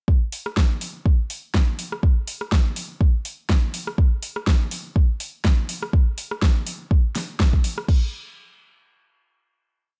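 Deep and warm, this short house groove moves at 123 BPM in 4/4 with a gentle 16th-note swing. A deep, tape-warm electronic kick holds a four-on-the-floor pulse up front from 0.1 seconds, and a deep house drum kit joins at 0.3 seconds with a fat snare backbeat, rim clicks, metallic open hi-hats and crash cymbal. Digital ambience surrounds the layered, produced drums until a final hit at 7.9 seconds rings out to the close.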